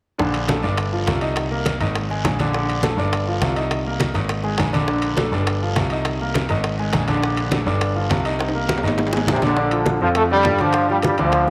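A joyful, danceable salsa opens with two grand pianos: a bright, polished one plays the chords over a smooth, vintage-toned one carrying the bass up front, its action noise audible. Very quiet congas and high-tuned bongos, a raspy, distant guiro and ringing metal-shell timbales fill in the percussion. During a drum fill that begins at 8.4 seconds, an up-front trombone section with light vibrato takes the melody at 9.3 seconds, and the guiro drops out at 9.6 seconds, all within a moderate echo-chamber reverb.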